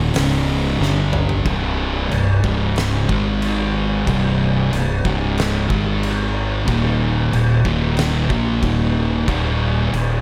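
A light, small-room reverb gives this short stoner and doom metal excerpt a close, heavy sound, and the mood is ominous and brooding over a straight 4/4. Two thick fuzz guitars play the riff throughout, both picked and distorted with a dark tone, one placed up front and the other sitting in the background. Beneath them, a fingered electric bass adds warm, growly, overdriven fuzz, captured both direct and through its amp. An oversized, low-tuned acoustic drum kit plays in a bright, pumping stone room, pairing a punchy kick and fat snare with dusky cymbals, hi-hat and toms, and its sound is saturated and gritty. The brief opening passage moves from Db5 to G5, and a drum fill from 0.8 to 1.5 seconds leads into the longer main section, where the chords move through C5, Db5, Ab5 and Eb5.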